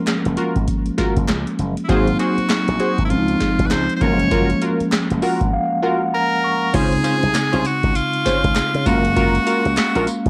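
New jack swing R&B with a flirty, upbeat mood, cut from a longer piece at 99 BPM in 4/4 with a swung sixteenth feel in Db major, its chords moving through Gbmaj7, Ab7 and Dbmaj7. A booming analog drum machine, printed to cassette tape and placed up front, supplies a deep kick, crisp snare, metallic hats, crash, tambourine and handclaps. Alongside it sit a very quiet, hollow group handclap, a growly slap bass through an envelope filter, a mellow tine electric piano that plays a fill from 4.9 to 6.7 s, and punchy, detuned sawtooth polysynth stabs with chorus and a filter sweep, while from 1.8 s an edgy, forceful tenor saxophone takes the solo melody with vibrato, all in a home cassette recording with light reverb.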